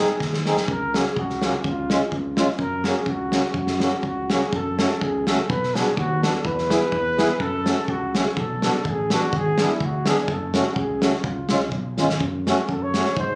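Captured on a phone in the room, this short cut from a longer piece has a compressed, club-like ambience and a moderate studio reverb around it. It is festive, jolly alpine folk from an alpine dance band, moving at 125 BPM in a swung 2/4, starting in F# major and turning to F# minor at 4.5 s. A dark trumpet carries the melody in a classical style, with light vibrato, a soft attack and a smooth top, set in plate reverb and delay. Beneath it, a close-miked, dry accordion gives reedy, round, full accompaniment, while a sustaining fretless electric bass adds an amped, growly, punchy low end. A loose indie drum kit with a tight kick, a medium-tuned snare and a rolled-off top sits up front, opening with a fill at 0.2 s and adding another at 12.0 s. The minor-key passage moves through chords such as Bm, E and G#dim before returning to F#m near the close.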